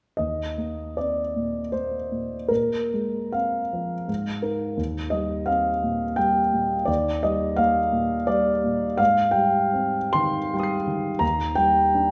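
Bathed in a wet recital-hall reverb, this serene, hazy excerpt of impressionist classical solo piano drifts in 3/4 at a rubato 66-88 BPM in Eb major, the intimate, up-front concert grand ringing with long sustain, deep bass and audible action noise as it moves from a lone Eb5 at 0.2 seconds through suspended and seventh-chord colors to settle on Ebmaj7 at 11.2 seconds.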